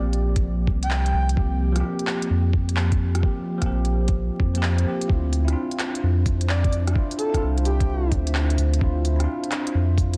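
A dense, heavily limited digital mix, dusted with vinyl crackle and a digital ambience, frames this ghostly, wistful future garage excerpt in swung 4/4. A round sine sub bass and a muffled, thumpy electronic kick sit up front, the kick carrying tape-toned, sampler-style grit, while a crisp, produced drum kit of handclaps, hi-hat and rim click sounds in a large room. A bell-like tine electric piano carries the accompaniment throughout, pumping against the sidechain under phaser and tape echo as a low-pass filter sweeps across it. A soft, breathy flute-like synth lead with tremolo, vibrato and chorus offers a brief phrase at 0.8 seconds, then returns from 6.5 to 8.1 seconds. The harmony moves from C7sus4 to Dm9 at 5.1 seconds, and at 6.0 seconds a dark, warbling, nostalgic pad enters with slow-attack chords, lo-fi grit and built-in reverb.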